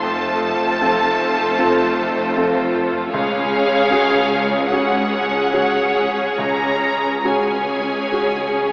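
Cinematic and sorrowful, this slow, rubato excerpt at 69-78 BPM sets an intense, vibrato-laden violin section singing the longing melody up front over a smoother second violin line, rich bowed violas, a focused cello section and distant double basses in the background, with a clear, vintage, short-sustained grand piano accompanying in the background, all bathed in scoring-stage reverb and filtered through an AM-radio sound as the harmony moves from F to Dbsus4 at 3.1 seconds.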